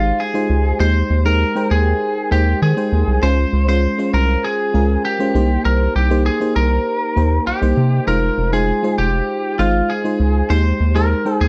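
A straight 4/4 pulse at 99 BPM carries this romantic, glossy 1980s-style pop excerpt in Ab major, moving through lush seventh chords from Fm7 to Abmaj7/Eb, Dbmaj7 and Cm7. A rubbery, hollow square bass sits dark and up front beneath a glassy FM electric piano with bell-like attacks and chorus, while a lightly driven lead guitar carries the melody with a twangy, slightly broken-up tone and slapback echo. The sound is dry and close, like a 1970s-style studio, with only light reverb.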